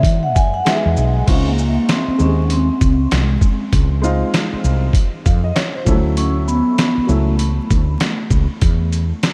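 A dreamy, reverb-soaked mix with vinyl crackle and a huge ambient space frames this relaxed jazz-hop excerpt with a swung, laid-back hip hop feel. A gritty, compressed sampler-style drum kit sits up front, its thumpy kick, medium-tuned snare, hi-hat, shaker and crash carrying a pitched-down, tape-warm character and vintage 12-bit crunch. Beside it, a woody fretless electric bass growls with a round, punchy, hollow-body tone. A vibraphone played with soft mallets carries the melody, metallic and ringing yet mellow and airy, with a slow motor vibrato and a trailing delay, and it takes a solo over the first 1.3 seconds. A dark upright piano enters at 0.7 seconds as quiet accompaniment, intimate and slightly detuned, with audible action noise and long sustain. The lush major-ninth harmony shifts throughout, and the fragment breaks off at 9.3 seconds, as it is cut from a longer piece.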